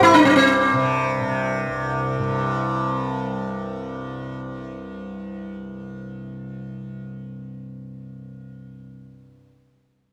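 Set in a straight 5/4 at 136 BPM, this serene, radiant fragment of an Indian classical performance, cut from a longer piece, opens with a bright, plectrum-plucked sitar carrying the melody between C4 and E4, its sympathetic strings ringing through a plate reverb until it stops at 3.8 seconds. Underneath, a softly plucked tanpura holds a buzzing, shimmering drone from C2 to C3, sitting quieter in the mix and continuing alone after the sitar stops until 9.3 seconds. Both instruments sit up front in a small, wet room with a brief natural decay, tuned to A4 = 440 Hz.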